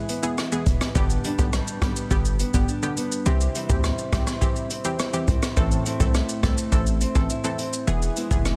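A small, fingerpicked nylon-string guitar opens this sultry, bouncy dancehall excerpt with arpeggios trailed by tape echo, with finger squeak audible. It is joined almost at once by an up-front vintage brush drum kit whose punchy kick, hi-hat, rim click and shaker have a rolled-off top, with soft clipping on the snare. A bright, detuned chord stab with sawtooth and square-wave tones, a sub octave, filter pluck and chorus carries the harmony from E through G and C to A minor, while a heavy, saturated 808-style bass with a sine body and noise layer enters at 0.7 seconds and sits in the background of a dense, heavily limited mix with studio ambience.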